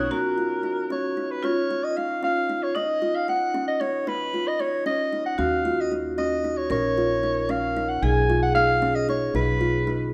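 Contemporary chamber music in a restless, hypnotic 5/8 at 228 BPM (eighths), this excerpt from a longer piece features a raspy, growling soprano saxophone leading up front with vibrato and scooped notes in a jazz style, while a hard-mallet vibraphone rings out a metallic second line and a woody, airy kalimba plucks arpeggios. A bright pizzicato upright bass sounds for an instant at the start and then enters in earnest at 5.4 s. The harmony moves from D#m7 to A#m at 6.7 s and G#m/B at 8.0 s, all under light reverb.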